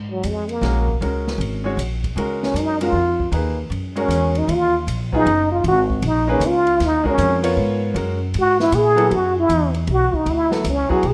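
A swung 3/4 pulse at 156 BPM drives this modal jazz excerpt in G# dorian, cut from a longer piece and carrying a spiritual, cool mood. The upright bass starts at 0.0 seconds, plucked with a woody, up-front tone, and the open jazz drum kit follows at 0.2 seconds, sitting low in the mix with dark cymbals across hi-hat, ride, snare and a boomy kick. A trombone with a plunger mute takes the solo throughout, close-miked and up front, its wah-wah voice shaped by light vibrato and a soft attack. A clear, vintage-toned grand piano enters at 0.6 seconds to comp beneath it, moving from a G#13sus4 harmony to F# and then Bmadd9 as the theme restarts. The rough home demo mix is bathed in moderate plate reverb.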